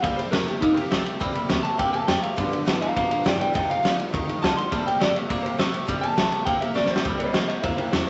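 An electric guitar through a small old amp carries the melody in this rowdy, rollicking rockabilly excerpt, its picked tone slightly broken-up and twangy. A clean electric guitar solo runs from the start to 7.1 seconds. The straight 4/4 groove moves at a brisk 205 BPM over a C7, G7 and F7 progression. A second electric guitar plays a low riff with a bright, clean, compressed and scooped sound colored by vibrato. A full-bodied steel-string acoustic guitar, a picked dreadnought with audible finger squeak, plays accompaniment in the background. A pizzicato upright bass with gut strings sits further back, woody and thumpy, while a raw garage drum kit stays up front with a punchy kick, fat snare and ride cymbal in a gritty, saturated, stone-room sound with a rolled-off top. A drum fill at 6.8 seconds leads into a new section at 7.1 seconds, all set in moderate studio reverb.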